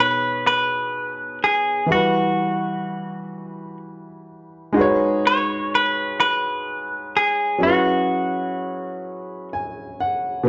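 A clean, compressed semi-hollow electric guitar carries the melody up front with a slapback echo, its picked hollow-body tone sitting in a narrow, mid-register span. Beneath it, a grand piano with natural, audible action noise accompanies through B69, Emadd9, G#m7 and F#7sus4 in this slow, intimate R&B excerpt at 42 BPM in a straight 6/8, tuned to A4 = 436 Hz. A piano fill enters at 9.0 seconds and carries on after the guitar stops at 9.5 seconds, all set in a small room with light reverb.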